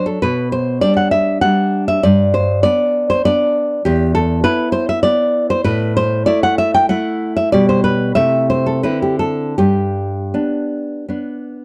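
A solo nylon-string guitar opens at once, fingerpicked and up front, its full-bodied tone carrying a romantic piece in G major with a sunny, warm mood. In 3/4 with a rubato feel drifting between 78 and 103 BPM, the playing moves through chords such as G/B, E5, A5 and Am/C, passes through Dsus2 at 8.8 seconds and settles on G at 9.6 seconds, with finger squeak audible on the strings. The dry, close 1970s-style studio sound keeps the guitar intimate across this short 11.6-second cut from a longer piece.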